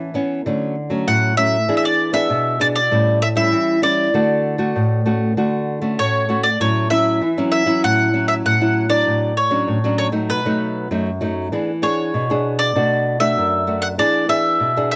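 A picked mandolin and a fingerpicked nylon-string guitar open this sunny, playful samba excerpt together, and both sit up front for its full 15 seconds. The mandolin carries the melody in its upper register, its double strings giving a bright, woody tone with a touch of cassette-tape grit. Beneath it, the small, warm-toned guitar supplies the accompaniment, treated with a plate reverb. The opening passage moves through jazzy seventh chords such as Dmaj7, E7 and A7, and at 6.6 s the harmony shifts into a new stretch that runs through A6, F#m7/A, B7 and Bm7 before settling on E7. The home cassette recording has the close feel of a small booth, giving the duo an intimate, casual charm.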